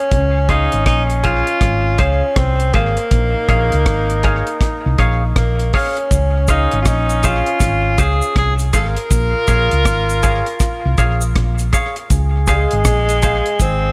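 A light reverb and small-room ambience frame this uplifting roots reggae passage, cut from a longer piece and resting on a single Dbmaj7 chord with a gently swung sixteenth-note feel. A clear tenor saxophone carries the melody with light vibrato, sounding distant and roomy yet up front, its line touched by tape echo. A brilliant trombone plays a second line in a pop style, also with light vibrato and tape echo. The hollow-body short-scale bass sits dark, round and prominent under a dry, deep reggae kit of hi-hat, tight kick and rim click. A bright, clean, compressed semi-hollow guitar picks out the accompaniment through tape echo from 0.5 seconds, and a cabasa joins at 6.1 seconds.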